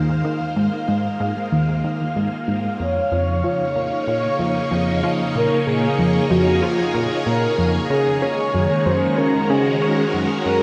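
A straight 4/4 pulse at 94 BPM is driven by a tight sequenced synth riff, its detuned sawtooth and pulse tones given a fast filter pluck and sitting up front with chorus, phaser and delay. This is ambient, sequencer-driven space music with an expansive, cosmic mood, cut from a longer piece. Alongside it, a vintage phased string machine fades in across the whole 10.6 seconds, holding swirling, bright chords up front through ensemble chorus and phaser. High above, a bubbling stepped-filter texture sits on a resonant F5, its random filter steps softened by chorus and built-in reverb. At 2.8 seconds a mellow horn-like synth lead enters with a round, full-bodied melody carrying vibrato, chorus and delay, as the harmony moves from Ab6 to Bbm and then Gbsus2 at 7.9 seconds. A wet shimmer reverb with a long 7.2-second tail gives the mix its vast, floating space.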